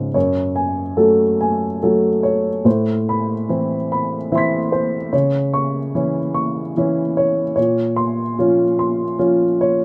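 A rubato lilt in three gives this reflective, wistful neoclassical minimalist piano fragment a gently drifting pulse. A dark, woody upright piano plays alone from 0.0 to 9.8 seconds, its mellow, vintage tone sitting up front in a light reverb and ranging from low bass up into the high treble. Its harmony moves through F#madd9, Amadd9, C#m and A#madd9, leaving the brief passage hanging in a wistful, unresolved mood.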